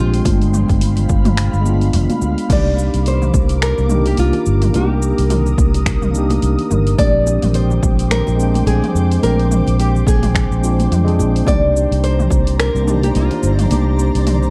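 Sunset chillout in C minor at 107 BPM with swung sixteenths, smooth and relaxed in a dark, lightly reverberant mix cut from a longer piece, where a small, fingerpicked nylon-string guitar carries the melody through digital delay over a clean tine electric piano with medium tremolo and tape echo, an ethereal, detuned pad sustaining chords through ensemble chorus, and a growly, up-front fretless bass with tube saturation, while an overdriven deep house kit of cabasa, crash, finger snaps, hi-hat and toms plays alongside very quiet, close, dry congas and bongos and a punchy electronic kick that drops out at 12.4 seconds as a faint, twinkling granular shimmer enters, the harmony moving from G7b9 to Cm9 at 2.5 seconds, then Bb13 and back to Cm9.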